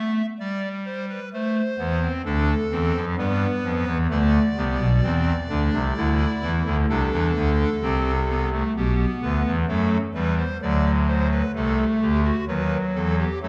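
A hollow clarinet reed stop on pipe organ, shaded with tremulant and placed up front, carries this solemn yet driving baroque-style three-part fugue in A minor at 64 BPM in a straight 4/4. The lone organ spans B1 to E5, moving from Em/G through Am, G, Cadd9 and D before arriving at B7/D# at 12.5 seconds. A dark production and a recital hall reverb lasting 1.4 seconds surround this passage, which is cut from a longer piece.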